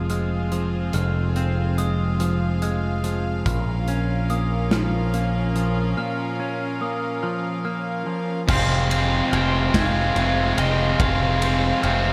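Cathartic and melancholic, this slow 6/8 post-rock passage, cut from a longer piece, layers earthy bowed chamber strings, a mellow glockenspiel ringing in the background through analog delay, a clean hollow-body guitar fingering arpeggios in spring reverb until 8.5 seconds, a growling overdriven bass up front and a dark, punchy rock kit, then after a break from 6.0 seconds, a bright fingerpicked slide guitar melody and a compressed distorted guitar riff join at 8.5 seconds.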